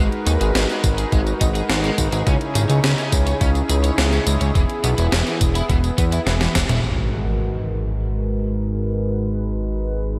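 A fat, detuned sawtooth analog bass sits up front in this driving, cinematic synthwave excerpt at 105 BPM in G# minor, beneath a brassy, evolving pad with chorus and a bright, overdriven, double-tracked guitar riff with tape echo set in the background, while a gated 80s drum machine with a gated-reverb snare and a thumpy electronic kick drive the groove until a drum fill and band accent hand off at 6.8 seconds to a background impact and a filter sweep on the pad, all in a big arena hall.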